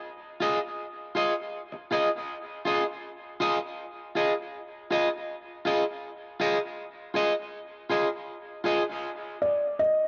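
A straight, unhurried reggae groove in 4/4 sets a hypnotic, spacious mood in this short cut from a longer piece, resting on a single Fm7 chord. An electric guitar at the edge of break-up carries the accompaniment from 0.4 to 8.8 seconds, twangy and up front, bathed in lush chorus and dub echo. At 9.4 seconds a felt-muted upright piano takes a brief melodic phrase, its thick-felt, dark and intimate tone trailing dub echo inside a moderate spring reverb.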